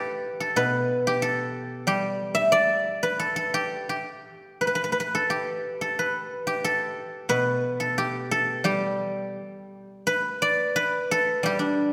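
A solo guzheng, plucked with fingerpicks and sitting up front with a silvery, ringing tone, spreads a flowing, pastoral Chinese traditional melody in free rubato across a range from B2 to E5, bathed in the lush reverb of a concert hall, with a new section arriving at 10.1 seconds in this short cut from a longer piece.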